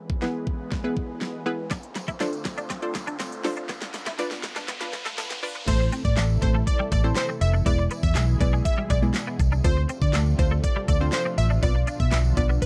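A straight 4/4 pulse drives this bittersweet, energetic dance-pop excerpt: a build-up with a drum fill, a filter sweep and a background riser gives way at 5.7 seconds to a drop where a punchy, vibrato-tinged unison lead and a dark, foam-muted fingered bass join the knocking, up-front pop drum kit, the sidechain-pumped sawtooth pluck, the lush phased pad, a twangy twelve-string electric guitar riff and a faint, distant tambourine, all in a dry, close 1970s-style studio sound.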